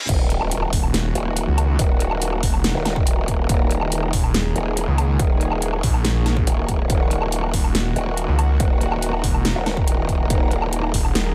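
Aggressive and chaotic, this short cut from a longer heavy wobble dubstep track drops straight into a half-time groove over an Eb minor chord. A punchy electronic kick, captured in a large room, sits alongside a layered dubstep kit with a huge snare, metallic hi-hats, crash cymbal and woodblock, all carrying a tape-warm tint. A faint reverse cymbal and impact open the drop and are gone by 1.8 seconds. Two up-front basses dominate: a bright, saturated growl bass wobbling through a formant filter with chorus, and a snarling sawtooth bass of detuned unison voices, distorted and shaped by a moving notch, arriving at 0.7 seconds. Behind them sits a thick, lush sawtooth pad holding sustained chords with chorus and sidechain pumping, while a very quiet, mellow and ethereal pad of detuned airy voices and a noise layer floats high above in its own built-in reverb. The mix is wrapped in a digital ambience.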